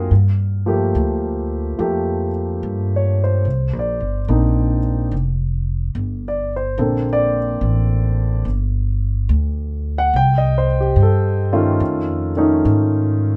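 A woody, pizzicato upright bass sits up front in this late-night, romantic jazz ballad at 72 BPM in 4/4 with swung eighths, playing throughout the 13.4-second passage from a longer piece. Beside it, an intimate concert grand piano with deep bass, long sustain and audible action noise voices chords such as Gm9, Cm9, Bbmaj9 and a closing F7alt. Light reverb gives the pair a sense of space.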